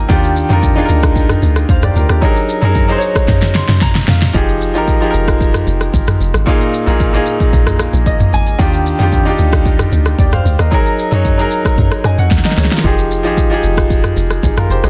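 A round, percussive log drum bass with a dark tone, fast attack and decaying tail anchors this deep, late-night amapiano excerpt, cut from a longer piece. An up-front, layered electronic kit with a deep kick, fat snare, smooth hats, shaker, rim clicks and toms drives it, and a drum fill arrives at 3.3 seconds alongside a piano fill. A clear grand piano voices lush extended chords such as Ebmaj9, Gb69 and Fm9 and adds another fill at 7.8 seconds, all set in a digital ambience with a dense, heavily limited modern master.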